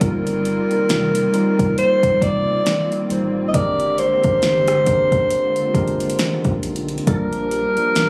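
Contemporary R&B at a slow 68 BPM in 4/4, with a light swing on the sixteenths, this short cut from a longer piece carries a longing, late-night mood. A dark alto saxophone leads the melody up front, playing in a jazz style with subtone and scooped notes, though its sound feels distant and roomy. Beneath it, a mellow tine electric piano comps cleanly as if through built-in speakers, while a hollow, flute-like pad warbles in the background with ensemble chorus and sidechain pumping. A round analog bass sits deep and nasal at the bottom, and a smooth, produced R&B kit of soft kick, fat snare, rim click and metallic hi-hats sits forward in the mix. The harmony moves from Eb69 to Abmaj9#11 at 3.5 seconds and lands on Bb6 at 7.1 seconds, all heard through the light club reverb and compression of a phone recording in the room.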